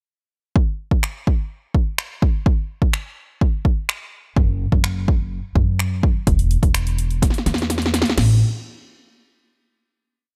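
A syncopated pop beat at 126 BPM drives this short, euphoric and summery dance-pop piece, built from a punchy, overdriven analog drum machine with kick, snare, hi-hat, finger snaps and crash cymbal, joined at 4.4 seconds by a woody, thumpy pizzicato upright bass with sidechain pumping, both up front in a dry mix, before a drum fill at 7.2 seconds leads into a final note at 8.2 seconds.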